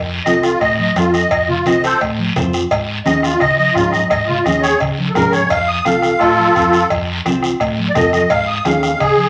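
Cumbia at 172 BPM, this danceable, passionate passage cut from a longer piece is led by a reedy, shimmering musette accordion solo, close-miked and up front, over small fingerpicked nylon-string guitar, a dark, round, punchy hollow-body electric bass, a soft-beater bombo, thin-skinned congas in the background, a raspy guiro and ringing cowbell and timbales entering at 0.6 seconds, all alternating between F and Absus4 in a club-like room.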